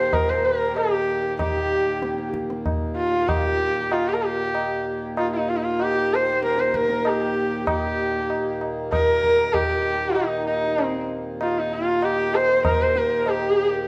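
Heard in a moderate recital hall reverb, this devotional, meditative Hindustani classical excerpt in 5/4 sets an intimate, up-front dark sarangi carrying the melody with gliding portamento, light vibrato and sympathetic strings, alongside a very quiet, woody second sarangi line, a reedy, breathing pedal harmonium drone and low-tuned tabla.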